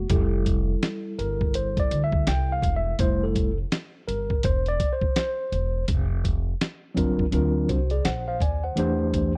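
A mellow tine electric piano solos over woody, pizzicato upright bass from the start of this smooth, warm jazz-hop cut at 83 BPM in F major. A gritty, compressed sampler-style drum kit with a thumpy kick, hi-hat and medium-tuned snare joins at 0.1 seconds, swinging the sixteenths in a dry, close 1970s-style studio sound. The piano's solo runs until 5.9 seconds, when the harmony moves from Fmaj9 through Fsus2, D7alt and D9sus4.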